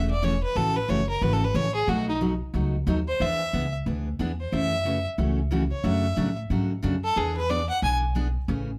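Playful and cheerful, this short western swing excerpt at 182 BPM in 4/4 with a swung feel puts a clear, earthy bowed fiddle with light vibrato and a bit of plate reverb up front on the melody from 0.0 to 7.9 seconds, over a full-bodied picked dreadnought acoustic guitar and a woody, thumpy pizzicato upright bass, moving through jazzy chords like Amaj7, F#m9 and E7 in a moderate studio room.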